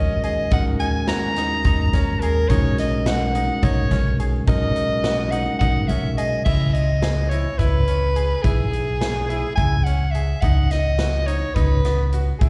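Heard as a live gig through the venue's PA with recital-hall reverb, this tense, brooding progressive instrumental fragment in 7/8 sets a clear, up-front soprano saxophone melody with vibrato and slapback echo over gritty, barky overdriven tine electric piano that drops out at 6.4 seconds, brilliant grand-piano arpeggios with slapback and digital delay, a woody, thumpy pizzicato upright bass, and a swinging big-band drum kit with a boomy kick that enters at 0.2 seconds.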